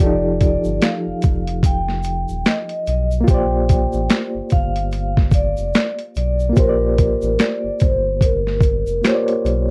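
Up-front, gritty boom bap sampler-style drums with a thumpy kick, high-tuned snare, hi-hat and handclaps drive this mellow, nostalgic lo-fi hip hop excerpt at 73 BPM, with swung 16ths in Bb major, as a deep sine-and-triangle sub bass with octave sits underneath, an overdriven reed electric piano with fast tremolo plays reedy chords through a combo amp, a vibraphone with soft mallets carries an airy, ringing melody through analog delay, and a grainy tube shaker enters in the background at 0.4 s, the whole mix sitting in light reverb and worn, warbling cassette tape.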